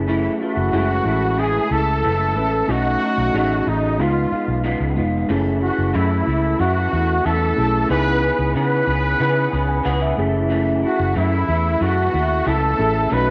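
Hazy and wistful, this indie pop fragment at 92 BPM in F# dorian carries a breathy, whispered trumpet melody with chorus and slapback echo from 0.4 seconds, over a slightly broken-up, lo-fi electric guitar through a small old amp with warbly chorus, a reedy electric piano with cassette-tape coloring that adds a fill at 9.2 seconds, and a round, punchy, foam-muted vintage fingered bass, set in a moderate echo-chamber reverb.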